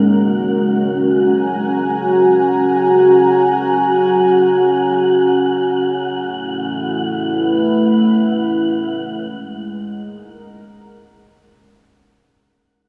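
A dark, smooth analog pad sits up front in this short ambient excerpt, holding sustained chords from Ab3 to Bb5 with slow attacks, long releases, a sub octave beneath its sawtooth and triangle tones, and a chorus effect. The harmony drifts from Gbadd9 to A6 at 6.2 seconds and settles on Ab7sus4 at 9.2 seconds, at an unhurried 79 BPM in 4/4. Alongside it, a far quieter wind-like texture of tuned noise and sine hovers on Gb5, breathy and airy, bathed in its own reverb. The whole mix is soaked in a huge ambient reverb with a 7.8-second tail, along with a trace of small room ambience, giving the music a weightless, peaceful, dreamy character. Cut from a longer piece, the passage begins fading out at 4.2 seconds and continues to dissolve through to its end at 12.3 seconds.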